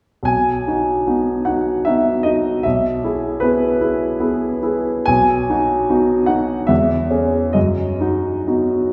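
Romantic classical nocturne for solo piano in B major, dreamy and tender, moving at 74 BPM in 3/4 with a free rubato sway, its smooth, vintage-toned grand piano placed up front and ranging from B1 to G#5 within a lush recital-hall reverb, as this brief excerpt drifts from B through E/B and C#m/E before settling on B/F# at 7.6 seconds.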